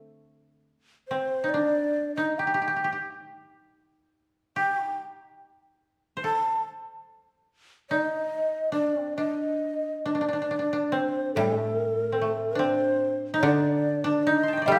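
This is Japanese traditional chamber music, austere and calm, moving in a free, rubato two-beat pulse that has been cut from a longer piece. A koto carries a second line throughout, its fingerpicked strings sounding woody and up front. A lower koto sounds briefly at the opening, then returns at 11.4 seconds to add a deeper accompaniment once the music has moved into a new section. From 1.1 seconds a bamboo shakuhachi takes the melody, breathy and hollow, with tongued attacks, audible chiff and vibrato. The recital-hall reverb gives the close, dry-toned instruments a lingering, church-like resonance.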